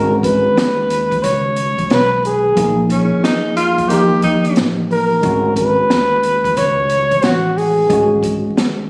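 Jazz-hop with a smoky, nocturnal swing, this brief cut from a longer piece sets a breathy, close-miked flugelhorn melody up front over a worn, slightly out-of-tune electric piano with light overdrive, a woody pizzicato upright bass and an open jazz kit with a high-tuned snare and boomy kick, while a whispered tenor saxophone slips in with a second line from 2.9 to 4.7 seconds, all wrapped in small-room ambience, phone-recorded grit and vinyl crackle.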